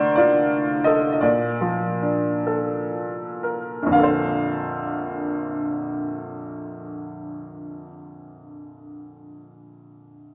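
Swaying in a slow, rubato 6/8 at roughly 39 to 61 beats per minute counted in dotted quarters, this brief classical fragment for solo piano unfolds with a peaceful, calm lyricism in Bb major. A single upright piano carries everything from 0.0 to 10.3 seconds, ranging from a deep Bb1 up to F5, its tone brilliant and woody with a worn, slightly detuned character that sits up front in the mix. The opening passage slows down through its first 3.9 seconds, moving from Dm7 to Bbmaj7 before a new section settles at 3.9 seconds on a Bbmaj9 chord. Tuned to A4 = 443 Hz, the piano rings out into a wet recital hall reverb with a 1.2-second decay, giving its bright tone an open quality. Cut from a longer piece, it feels like a calm moment caught mid-thought.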